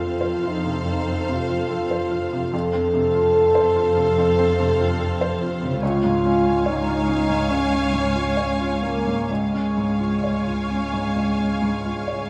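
A wet scoring-stage reverb surrounds this brief orchestral excerpt, a moving and tender piece of film music in 4/4 with a rubato feel. Mellow French horns, the most prominent part, hold soft-attack sustained chords that sound distant and roomy. A felt-muted upright piano supplies warm, intimate accompaniment, with thin felt, short sustain and audible action noise. Rich bowed string sections sing with vibrato: the violins add a focused second line high above, the violas fill in smooth, even support, and the cellos anchor the bass with expressive portamento. A bright concert harp, thumb-plucked and ringing in the background, spins arpeggios until it drops out at 9.7 s. The harmony rests on F before moving to Db at 5.8 s, and the remaining parts carry on to the cut at 12.3 s.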